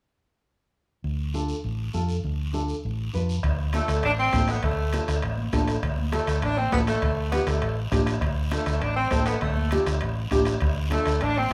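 Set in a moderate large-studio reverb, this fiery, danceable cumbia opens with a dark, round, punchy hollow-body electric bass up front and raspy guiro, joined at 1.3 seconds by a woody, fingerpicked nylon-string guitar. A distant soft-beater bombo, ringing high-tuned congas and metal-shell timbales join at 3.4 seconds, and a warm, tight saxophone section takes the melody from 3.7 seconds.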